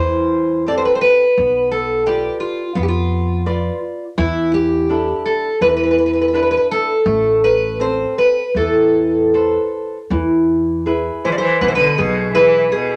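A fingerpicked twelve-string acoustic guitar carries the melody from the first moment in this mournful, passionate fado-style ballad, its octave-doubled strings shimmering up front with a faint finger squeak. Beneath it, a flamenco guitar fingerpicks the accompaniment with a warm glow, while a pizzicato upright bass on steel strings adds a woody, thumpy foundation. The rubato feel lets the harmony drift from Am7 through Bdim and E7sus4 toward Amadd9 before settling on E. At 11.2 seconds a single bowed cello enters with a smooth, even second line, clear and touched with vibrato. A moderate studio reverb gives the ensemble a modest sense of space in this short fragment of a longer piece.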